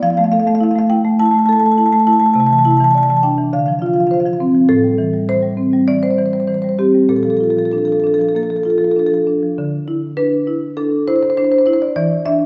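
A wet recital-hall reverb with a 1.4-second decay surrounds this recording, captured in a church or concert hall, while the marimba itself sits up front with a boxy, small-room character. It is a contemporary classical piece for solo marimba in D minor, played with medium mallets on padauk bars that give it a woody tone, moving at 101 BPM in 4/4 with a loose, rubato feel. The mood is hypnotic and reflective, and the solo line spans from A2 up to A5 across the whole 12.5 seconds. The opening passage drifts through Fmaj7, Cadd9, Dm7, Am7 and Bbmaj7 before a new section begins at 9.6 seconds on Dsus2, ending on an open E7 chord at 12.0 seconds. This is a short cut from a longer piece.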